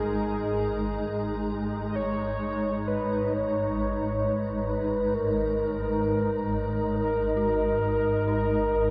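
A huge, reverb-soaked space holds this unsettling, desolate dark ambient drone in free time, where a round, horn-like synth lead with vibrato and analog chorus and delay sings a melody up front over a swarming, warbling low drone and a blurred, cloudy granular pad on a G#sus2 chord, and an eerie, inharmonic FM bell adds very quiet arpeggios from 4.8 seconds in this fragment of a longer piece.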